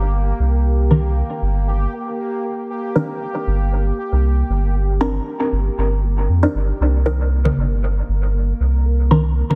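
Dub techno at 117 BPM with a light swing, hypnotic and meditative, built over a C7 chord in this short cut from a longer piece. A deep, round sub bass sits up front from the start alongside a bubbling, resonant sawtooth texture of random filter steps softened by chorus and reverb, while a muted, detuned chord stab with a filter pluck enters at 0.9 seconds, carrying phaser, dub echo and a filter sweep. Tape-warm analog electronic toms with dub echo arrive at 7.5 seconds, all set in light reverb within a dense, heavily limited master.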